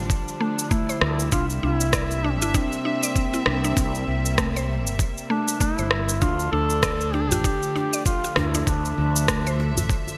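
A dark, sul tasto string section and a round fretless bass, both pumping with sidechain, open this mystical, hypnotic organic downtempo excerpt in D minor at 98 BPM with a 16th-note swing, as a gritty overdriven kick and tape-warm shaker and rim click sit up front, a mellow duduk with vintage 12-bit grit and delay sings over a woody, chorused FM mallet pluck playing arpeggios through Dm and C7, and a medium-tuned djembe with metal rattles joins in the background at 7.1 seconds, all in a bright 1980s-style digital mix with light small-room reverb.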